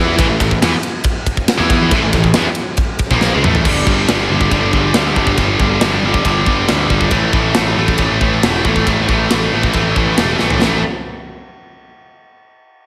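A straight 4/4 heavy metal drive at 138 BPM opens this epic, relentless excerpt cut from a longer piece, with a tight acoustic kit up front, medium-tuned snare, tight kick, crash, ride and toms, entering at 0.2 s and breaking into fills around 3.2 s and 10.4 s. A scooped, high-gain, double-tracked guitar riff, bright and distorted with a slapback echo, pounds through A5 and G5 alongside a growly, fuzz-laden overdriven picked bass in its low register. A lush hall reverb and small room ambience give the whole a big arena sound, with the instruments cutting off near 10.8 s.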